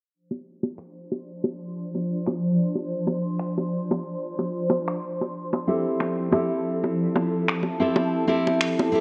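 A lightly swung 4/4 groove opens the excerpt as tight, high-tuned bongos enter at 0.3 s, played close and dry with hard hands, joined by layered, overdriven electronic finger snaps under a filter sweep. From 1.6 s a dark, ethereal pad with an octave-up shimmer drifts in on a slow attack, its chorus and phaser coloring a smooth, relaxed sunset chillout mood as the chords move from Dm7 to Fmaj7. At 5.7 s a full-bodied, fingerpicked nylon-string guitar with fresh strings and digital delay steps up front, all set in a lush hall reverb.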